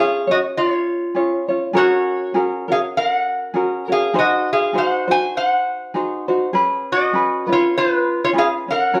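A metal-body resonator slide guitar and a fingerpicked tenor ukulele start together in this languid, sunny Hawaiian fragment, moving at 100 BPM in 4/4 with a gentle swing on the eighth notes. Up front, the slide guitar, played with fingerpicks, carries the melody with a metallic, nasal tone, while the light, acoustic ukulele accompanies through C#, F#add9, G#7 and C#7. The pair sits in a wet studio reverb, heard from further back in the room, and is tuned to A4 = 435 Hz.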